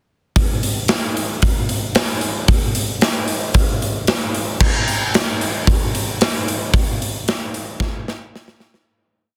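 A rock drum groove that feels anthemic and energetic, played in a straight 4/4 on a big acoustic kit with a punchy kick, medium-tuned snare, hi-hat, crash cymbal and bright cymbals sitting up front in a big room with light reverb and a dense, heavily limited modern master, fading out from 6.7 seconds as a drum fill closes the piece at 8.9 seconds.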